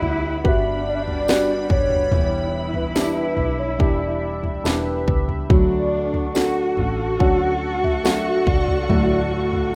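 Emotional and hopeful, this 71 BPM pop ballad in D major, cut from a longer piece, sets a hollow, woody synth lead with vibrato on the melody from 0.5 s over a dark bowed cello section, a natural-sounding baby grand piano, fingerpicked steel-string acoustic guitar arpeggios in the background, a bright, evolving pad, a round, foam-muted electric bass and a punchy, up-front electronic house drum kit with a cracking snare, while a jingly tambourine sits behind from 1.3 s to 8.2 s, the whole heard as a rough home-demo mix with small-room ambience.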